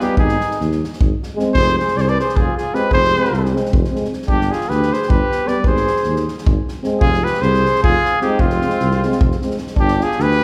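Heard from further back in a reverberant recital hall, this short cut from a longer Balkan brass band piece has a fiery yet bittersweet character, driven at 306 BPM in eighths through a straight 7/8 in F dorian sharp4. A warm trumpet with light vibrato carries the melody up front in a classical style, its slapback echo giving each phrase a quick shadow. Beneath it, a mellow flugelhorn sings a distant, roomy second line, also touched with slapback echo. A clear euphonium and a softly shaded French horn hold accompaniment figures in the background until 9.6 s, while a dark, smooth-topped tuba enters at 0.2 s to anchor the bass. A natural acoustic drum kit with a punchy kick and medium-tuned snare sits up front as the harmony moves between Ab, Fm and G.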